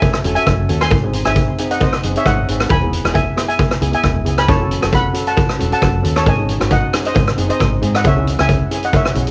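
Recorded at home on cassette with light reverb, this dramatic, intense calypso excerpt moves at 135 BPM with a slight swing on the sixteenths, its chords running from F#m7 through G#7 to C#m. A bright, shimmering double-seconds steel pan played with hard rubber sticks carries the melody through analog delay, over a second double-seconds pan on medium rubber sticks that supplies the accompaniment. Beneath them, an up-front street-band kit with a boomy kick, rolled-off top, hi-hat and rim click drives the groove, a metallic cowbell sits in the background, and a foam-muted, direct and amped fingered electric bass enters at 0.3 seconds.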